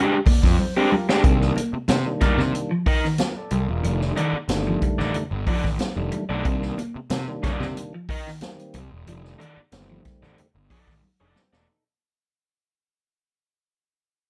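A roomy big-band drum kit with a boomy kick sits up front in this cool, driving 92 BPM funk cut in C dorian, with a crunchy overdriven guitar and punchy fuzz picked bass also up front, a clean electric guitar riff with subtle chorus and bright, hard-hand congas in the background, and tonewheel organ stabs with key click through a stopped rotary speaker, the organ opening with a fill before the groove moves between Cm9 and F13 from 1.2 seconds and fades out, with a drum fill at 11.0 seconds.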